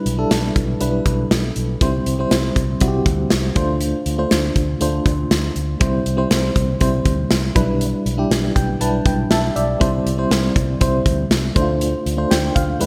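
A mellow, tremolo-laden FM electric piano opens this romantic, glossy 1980s-style pop passage, sitting up front with a fast attack and a noise layer as it moves through Em7/B, C and Dm7 chords. A round, amped fretless bass and a punchy modern drum kit join almost at once, the kit's hi-hat, kick and medium-tuned snare sounding up front in a pumping room with gated reverb, and the electric piano steps forward with a fill at 8.3 seconds. A lush hall reverb and bright digital production give this short cut from a longer piece its polished sheen.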